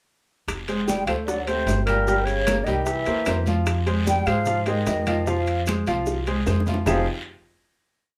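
A wet club reverb surrounds this driving, sophisticated Afro-Cuban jazz piece, where a woody, thumpy upright bass plays an up-front tumbao that anticipates the chords beside a clear baby grand piano montuno in octaves. A mellow, hollow silver concert flute carries hook phrases with vibrato while a veiled, breathy cup-muted trombone adds a jazz-style second line with octave doubling. Beneath them sits a background bed of bright congas with slaps and open strokes, tight high-tuned bongos, ringing metal-shell timbales, a two-bar clave time line and grainy maracas, joined by a raspy, saturated guiro. A drum fill runs from 6.1 to 6.9 seconds before the band lands on a closing Fm9 chord.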